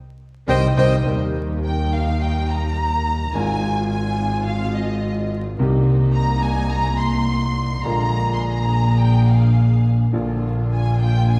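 A tense, sultry tango fragment opens with a band accent as a reedy, close-miked bandoneon flickers briefly over clear, boxy piano, a rich bowed double bass up front and dark, even chamber string stabs, before a lush, expressive symphonic violin section takes a solo from 1.1 seconds across rubato harmonies moving from Eb through Cm7 to Bb7, all heard from further back in a reverberant scoring stage with vinyl crackle.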